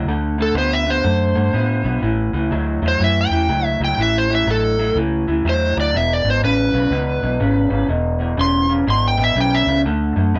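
Electric blues shuffle at 123 BPM in 4/4, swung and soulful with a swaggering strut, moving through A mixolydian over D7, A and E chords. An electric guitar through a small old amp carries the low riff from the start, its picked tone slightly broken-up, lo-fi and compressed. A vintage muted fingered electric bass sits beside it, round and punchy with a dark, foam-muted thump. At 0.4 seconds an overdriven slide guitar takes the melody high above the band, overdriven and dark, and solos until 9.8 seconds. The group sounds like it's playing live in one room with moderate reverb, and the piece is a short cut from a longer performance.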